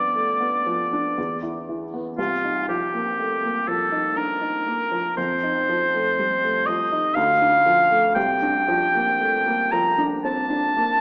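Impressionist classical duo in a wistful, hazy 3/4 at 57-62 BPM with rubato, where a clear, vintage-toned oboe with light vibrato sings the up-front melody over a warm baby grand piano accompaniment, both sounding through a wet recital hall reverb with a small speaker character across this 11-second fragment of a longer piece.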